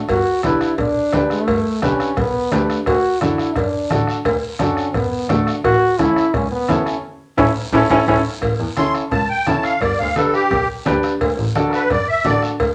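A straight 4/4 cumbia groove at 173 BPM drives this joyful, danceable latin excerpt in D major, with a soft-beaten bombo sitting in the background beneath ringing metal-shell cowbell and timbales, bright low-tuned congas and a raspy guiro. A bright, bowed double bass adds a biting, intense line with light vibrato from the start, while a woody upright piano with long sustain supplies up-front accompaniment over chords moving from G to D to A. A punchy trombone with vibrato and a smooth top steps out in a pop-style solo until about 8.2 seconds, closed out by a band accent and a drum fill. At 8.8 seconds a reedy musette accordion, close-miked, dry and shimmering with its wet tuning, steps forward for its own solo as the harmony returns to G and then D. A moderate club reverb gives the ensemble a lively sense of space.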